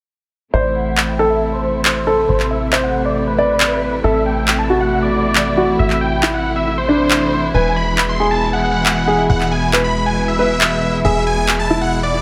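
From 0.5 s, a huge, detuned supersaw lead carries the melody over a dark, vintage grand piano second line with digital delay, lush bowed strings holding sustained chords, and a punchy, wave-folded analog bass, all under filter sweeps on the lead and strings, with layered electronic handclaps up front from 1.0 s, in this bittersweet, soaring uplifting trance cut at 137 BPM in A dorian, moving from Am to E at 7.5 s in light studio reverb.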